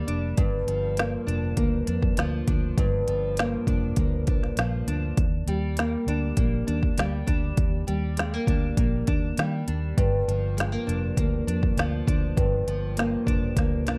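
Sunny and dreamy, this 100 BPM indie and bedroom pop piece, cut from a longer track, drifts between Gm7 and Ebmaj7 in a straight 4/4 feel, with a dark production and light reverb. An up-front, full-bodied, fingerpicked nylon-string guitar carries the accompaniment with subtle chorus, vibrato and plate reverb. A foam-muted, round and punchy vintage electric bass anchors the low end, while an organic electronic drum kit adds a deep kick, woody snare and crisp hats before closing on a drum fill at 13.6 seconds.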